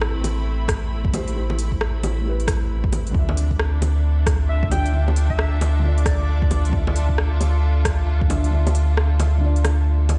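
A soft, boxy felt-muted upright piano with audible action noise and digital delay sits in the background beside a rich, smooth bowed string section with light vibrato and a round, up-front sine sub bass, all three pumping to the sidechain. A swung deep house kit of bongos, smooth hi-hats and rim clicks plays throughout, with a deep, layered electronic kick joining at 0.7 s and dropping out at 8.5 s. From 4.5 s an airy, detuned dreamy lead with chorus and dub echo floats in briefly, as this nocturnal, rainy future garage excerpt moves from Am7 to Dmadd9 and sounds like a big sound system in a bare stone room with a dulled top end.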